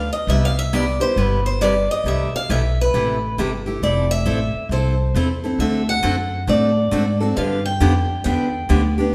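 Swung eighths at 136 BPM in 4/4 give this charming, playful jazz manouche clip in C major an easy, bouncing lilt, cut from a longer piece. A boxy, fresh-stringed swing-style acoustic guitar carries the melody up front between B4 and G5, while a woody pizzicato upright bass anchors the low end and a bright, picked steel-string acoustic guitar enters at 0.3 s to comp through Cmaj7, C6, Fmaj7, D7 and G7. The trio sounds like it is playing live together in one room, wrapped in a wet stone-room reverb that lingers about 1.3 seconds.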